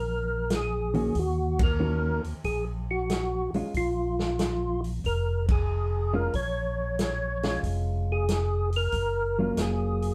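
A fat, clean tonewheel organ opens this bluesy, late-night soul jazz organ trio excerpt in Bb minor, its percussive, key-clicking melody with chorus vibrato floating over a bass line from the same kind of organ, both turning through a slow rotary speaker. A vintage acoustic kit of hi-hat, ride, medium-tuned snare and tight kick joins at 0.5 seconds, and a dark, compressed, fingered hollow-body electric guitar adds accompaniment from 0.9 seconds as the harmony moves from Ebm7 to Bbm7 and then Gbmaj7. The band hits two short accents together at a swung 93 BPM, with the parts sitting up front amid a wet, short studio reverb that places the listener a little back in the room.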